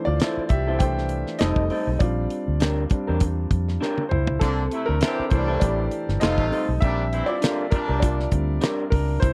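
The recording is dry and close, with a 1970s studio character that places the piano, bass and drums up front. It is a lush, 1970s-style soul piece cut from a longer work, with a gentle swing on the sixteenths and a warm mood. The concert grand piano carries a solo for the whole stretch, natural in tone with deep bass, while a dark, foam-muted fingered electric bass adds a round, punchy foundation. A damped acoustic kit with a fat snare and tight kick drives the groove, and a drum fill at 3.8 seconds leads into a clear, roomy horn section that enters at 4.4 seconds with tight, soft-attack jazz stabs and light vibrato, sounding distant. An electric guitar through a small old amp plays a slightly broken-up, lo-fi picked riff bathed in spring reverb. The harmony cycles through C6, F7 and Bb6.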